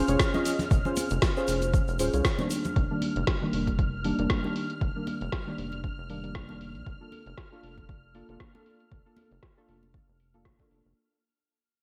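Fading throughout this late-night deep house excerpt, a deep, detuned chord stab with chorus, tape character, delay and sidechain pumping opens over a rubbery square bass and a silky string machine pad. A punchy, gritty electronic kick and a dark-hatted house kit with a woody snare and gated reverb drive the swung groove, while high-tuned congas sit in the background and a grainy egg shaker and a very quiet, airy jazz kit drop out by 2.7 seconds, all bathed in a lush hall reverb with a bright 1980s digital sheen.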